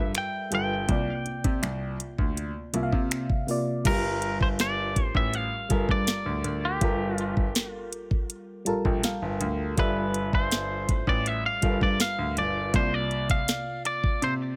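A dry excerpt of moody, late-night contemporary R&B, where a twangy, clean, compressed electric guitar carries the melody through digital delay over a dark FM electric piano with a noise layer and fast attack that adds a fill at 8.3 seconds, a clear concert grand piano playing the deep bass part, and a produced electronic R&B drum kit with knocking kick, sharp snare, metallic hi-hats, finger snaps and crash cymbal.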